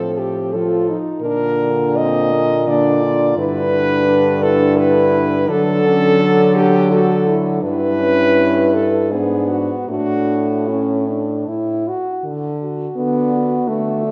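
This classical excerpt features a horn quartet playing a lyrical, warm piece in 3/4, moving with a flexible rubato between 75 and 89 BPM. It opens in Bb major and shifts to D major at 3.4 s, with the harmony then passing through a tender half-diminished colour before settling on a suspended chord and arriving on D as a new section begins at 12.2 s. A mellow French horn with a soft attack carries the melody up front. A second horn with a smooth top sings a quieter inner line in the background. A dark-toned horn fills in the accompaniment, while the lowest horn anchors the bass with a light vibrato and a roomy, distant quality. All four play together in a moderate scoring-stage reverb, heard from further back in the room.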